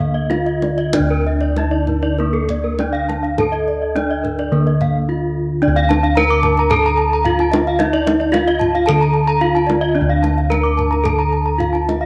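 Balinese gamelan in D pelog, brilliant and shimmering, moving in a straight 4/4 at 94-111 BPM through this short cut from a longer piece. A bright, airy horn-mallet bronze metallophone carries the melody, while two more paired-tuned metallophones spin arpeggios, one struck with a wooden mallet and the other sitting mid-forward in the mix, all ringing with beating shimmer. Round, dry bossed gongs hold the bass up front, and a deep, band-limited kendang joins at 0.3 s, with a brief break from 4.8 to 5.6 s before the second section and a moderate echo-chamber reverb around the ensemble.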